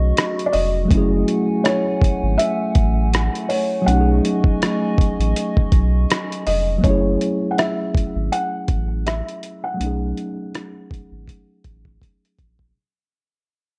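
Dark, dusty production with light digital ambience frames this reflective, nostalgic lo-fi hip hop fragment, cut from a longer piece and carrying a gentle swing. A felt-muted upright piano carries the melody with a soft, mellow, intimate tone, its thick felt, short sustain and audible action noise softened further by a low-pass filter. Beneath it, a worn, slightly out-of-tune tine electric piano supplies accompaniment, lightly overdriven with cassette-tape character as if heard through built-in speakers. A warbling, wave-folded pad holds sustained chords over B13 and F#m9 with chorus and built-in reverb, then drops out at 6.8 seconds just as the whole recording begins to fade. Up front sit a deep, thick, saturated sub bass and a gritty, compressed sampler-style drum kit of hi-hat, thumpy kick and rim click, and the drums close with a fill from 11.3 seconds.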